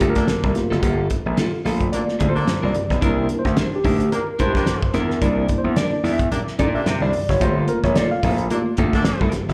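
Sly and funky, this swung fragment of a live club gig heard through the venue's PA features a worn, slightly out-of-tune tine electric piano soloing in lightly overdriven stabs with slapback echo, while a gritty, punchy slap bass and a cloth-damped, thuddy drum kit with a fat snare and tight kick sit up front, and a dark, clean, picked electric guitar with tremolo and slapback echo, distant low-tuned congas in the background and a loose, warm horn section with light vibrato and octave doubling carrying a second line fill out the chords from a rootless Gm9 to C9 and back.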